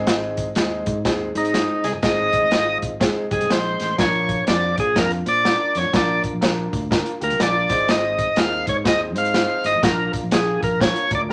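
Uplifting and danceable, this uptempo 1960s-style soul excerpt at 123 BPM swings over crunchy breakbeat drums with a tight kick, punchy fingered electric bass and clear concert grand piano accompaniment moving between Ab and Bb, while a thick, overdriven tonewheel organ with a slow rotary speaker enters up front at 1.4 s to carry the soloing melody through a moderate studio ambience.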